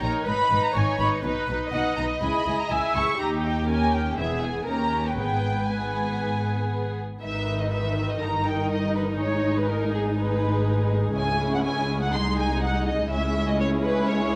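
A lively, cheerful string orchestra passage from a longer classical-period movement opens with the full ensemble at once: a dark, woody violin section sings the melody up front with vibrato, while a second, lush violin line and a pure, floating viola section fill in the accompaniment. Beneath them, an intimate, close cello section and a smooth-topped double bass section carry the bass, all bowed sul tasto for a soft, veiled tone. A moderate scoring-stage reverb frames the quick movement, and the music turns to a new section at 7.2 seconds before the excerpt ends at 14.4 seconds.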